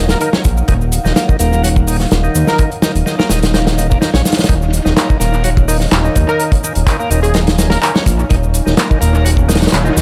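An echo-heavy small-room mix carries this gritty, energetic breakbeat cut at 126 BPM in Eb minor: a fat, detuned sawtooth bass and an up-front loose indie drum kit with tight kick, medium-tuned snare and hi-hat drive beneath a bright, shouting tonewheel organ riff colored by overdrive, slow rotary speaker, tube saturation and vintage 12-bit sampler crunch, while tape-toned electronic shaker and handclaps, a deep, moody ambient pad sustaining an Ebm9 chord with sidechain pumping in the background, a punchy, catchy plucky unison lead through a small-speaker sound that enters at 0.1 seconds and returns at 6.3 seconds, and a very quiet riser arriving at 9.3 seconds complete the texture.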